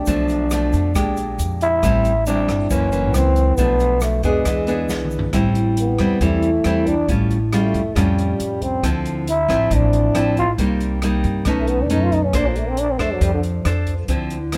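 Wistful and smooth, this bossa nova fragment puts a raspy, growling, vintage-toned trombone up front, carrying the melody and then stretching into a solo from 5.3 seconds, beside a fingerpicked nylon-string guitar whose finger squeaks give its classical comping an intimate edge. A woody pizzicato upright bass anchors the harmony, while an airy, polished jazz kit with a boomy kick and rim clicks supports it, adding a short fill just before the solo. A grainy, bright egg shaker sits in the background until 5.3 seconds, and light reverb lends the whole a gentle sense of space as the chords drift through lush seventh and ninth colors.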